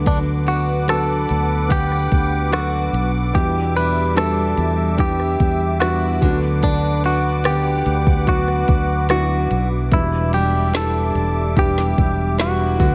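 A soft-kicked, woody-snared R&B drum kit with smooth hats sets a straight, unhurried 4/4 pulse for this longing, heartbroken pop ballad excerpt, where a dark, round fretless bass sits up front beside a twangy, compressed clean electric guitar melody trailed by tape echo, while a felt-muted upright piano with audible action noise, a detuned sawtooth pad with chorus, and a bright, picked steel-string acoustic guitar arpeggiating in the background fill out a digital ambience as the harmony rocks between Bm/D and Em7.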